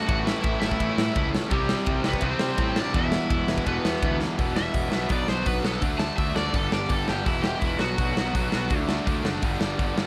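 Rowdy and upbeat, this short punk rock cut charges along at 167 BPM in 4/4: a big rock drum kit sits up front with a punchy kick, a growly fuzz picked electric bass drives underneath, two distorted electric guitars play riffs (one in the background, the other very quiet and compressed), and a very quiet, double-tracked high-gain distorted guitar adds another riff, while a bright cranked stack guitar with overdrive and tape echo carries the melody until 8.8 seconds; a drum fill at 4.2 seconds leads into an overdriven guitar solo from 4.4 seconds, set in a small room ambience over chords moving from A, C and E to Bm, D, G and E.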